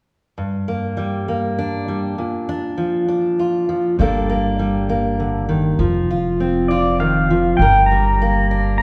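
A reverberant church-hall sound with a long, wet tail surrounds this haunting, melancholic folk excerpt in G minor, moving in 3/4 at 100 BPM. A full-bodied, up-front fingerpicked steel-string acoustic guitar carries the chords from the start, a woody, thumpy pizzicato upright bass joins at 4.0 seconds, and a clean, compressed pedal steel guitar enters at 6.7 seconds with high, sliding volume-swelled lines. The harmony drifts through G minor, B-flat, a G minor add-nine and a bare F before returning to G minor as a new section opens near the end.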